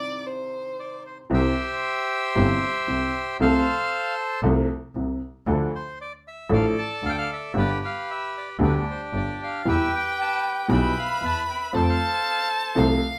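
A brief violin solo with soft-attack portamento and vibrato opens this passionate, elegant rubato tango in C major at 115 BPM over a woody, slightly detuned upright piano, before a reedy, airy bandoneon takes the melody and a bowed, focused double bass enters at 1.3 seconds, with the violin returning as a close, expressive second line at 9.6 seconds, all heard as a band playing live together in a small room with a wet reverb.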